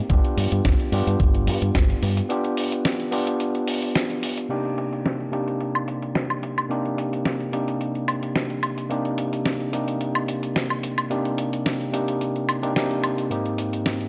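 Nu-disco at 109 BPM in C minor with a sleek, cosmic mood, this excerpt opens with a barky, overdriven tine electric piano through a combo amp, pumping and trailing tape echo over G7, while a round, punchy envelope-filtered fingered bass and a thumpy electronic kick play only until about 2 seconds, leaving the dusty soul sampler-style kit of snare, hi-hat, crash and woodblock, compressed and tape-warm in a large room, to carry a break alongside the electric piano from 2.3 seconds before a filter sweep on the drums from 4.5 seconds under Cm7 moving to Abmaj7, all in a dry, gritty hardware sound with light reverb.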